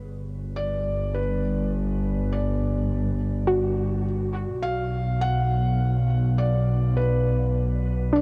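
A bowed double bass section opens this short ambient excerpt at 0.0 seconds, veiled and con sordino with light vibrato, sitting low and close in the mix. At 0.6 seconds a felt-muted upright piano enters with a mellow, intimate melody in a higher register, its vintage character marked by audible action noise and a diffuse ambient delay. A soft, round synth pluck joins at 3.5 seconds with gentle arpeggios in the middle range, its detuned, ring-modulated tone coloured by chorus, a cassette tape effect and the same diffuse delay. The slow 52 BPM pulse in straight 4/4 moves from G to a B power chord, keeping the mood reflective and serene. A huge reverb with a long tail and a dark, warm production surround the piece, which is cut from a longer work.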